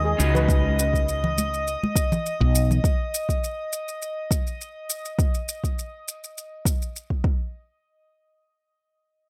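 Over a lightly swung 16th-note pulse at 102 BPM in 4/4, a deep, overdriven electronic kick sits up front with an overdriven shaker and close, dry acoustic congas in this relaxed sunset chillout excerpt cut from a longer piece. A dark, slightly broken-up picked electric guitar with analog delay appears only until 0.8 s, while a hollow-bodied woody fretless bass with tube saturation carries the low end over a Db9sus4 harmony until 2.8 s. A calm, sine-like texture of drifting glass harmonics with chorus and a slow attack sustains high above until 5.2 s, all set in an echo-heavy mix with moderate spring reverb.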